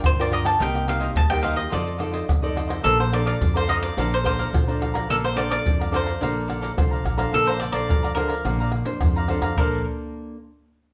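Samba and choro in a joyful, festive mood, this short excerpt cut from a longer piece opens with the whole band together in a large studio room: a tight surdo, tube shaker, pandeiro and tamborim played close and dry with soft hands, a woody, growly pizzicato upright bass, and a fingerpicked classical nylon-string guitar comping over Gm7, Cm7, F6 and Bbmaj9. Up front, a crisp, picked cavaquinho carries the melody while a second cavaquinho adds bright accompaniment, the parts sounding like a live group in one space with a moderate reverb. The bass, percussion and cavaquinhos stop just before 10 seconds, leaving the guitar to ring on alone until 10.4 s.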